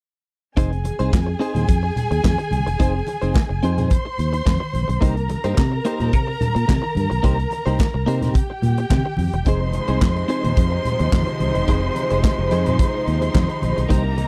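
Disco in F minor at 108 BPM, this short, danceable cut from a longer piece has a glamorous sheen and a dry, close sound in the manner of a 1970s studio. A tight kick, a medium-tuned snare, hi-hat and handclaps sit up front on an acoustic kit with a natural small-room tone. Beside them, a dark, round fingered electric bass with a foam-muted character anchors the low end. A bright, clean, picked electric guitar, compressed and treated with lush chorus, carries the accompaniment, while a violin section with expressive vibrato plays a second line above it, and soft-handed, low-tuned congas add a very quiet layer of percussion. The harmony moves from Fm7 to Cm7 at 5.0 seconds and back to Fm7 at 9.5 seconds, where a smooth, even string section enters with sustained chords and light vibrato.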